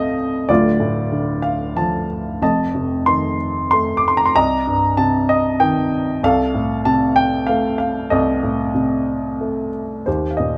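A solo baby grand piano opens this short classical fragment, played close and up front with a warm, short-sustaining tone that the detailed microphones capture clearly. The piece moves in a lyrical 3/4 at around 95 BPM, with a rubato feel that lets the phrasing breathe. The piano spans a broad register from D1 up to D6, giving the writing both deep bass and high upper notes. The harmony travels from Dm through F7 and Cm7 to F7 over C, before settling on Eb6 at 10.1 seconds, a turn that lends the passage a hopeful lift. A light reverb adds a touch of space around the instrument, and the fragment, cut from a longer work, ends at 10.6 seconds.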